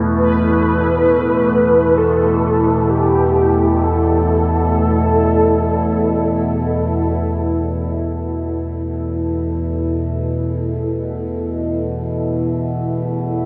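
Drenched in a huge, wet reverb with an 8.4-second tail, this cavernous, ominous dark ambient drone excerpt places a resonant sawtooth drone with moving overtones up front beneath a deep, moody, detuned pad of sustained chords with a sub octave, while a round, horn-like synth lead with vibrato and a diffuse delay sings a sustained melody until 7.1 s, after which the pad and drone hold on alone to 13.5 s.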